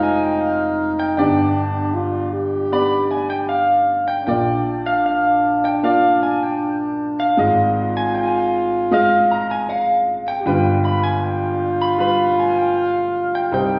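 This acoustic folk-pop ballad fragment carries a heartbroken, melancholic mood in a straight, unhurried 4/4. An electric guitar played through a small old amp takes the melody up front, its picked, twangy tone slightly broken-up and shimmering with harmonic tremolo. A French horn in a classical style traces a second line beneath it, sounding distant and roomy even as it sits forward in the mix. A woody, boxy upright piano, slightly detuned, supplies the accompaniment across a broad register, moving through Fm, G, Bb, Fm7/Ab and G7. All three play together from 0.0 to 13.8 seconds as a band live in one room, bathed in a wet, large studio reverb with a soft, rounded top end.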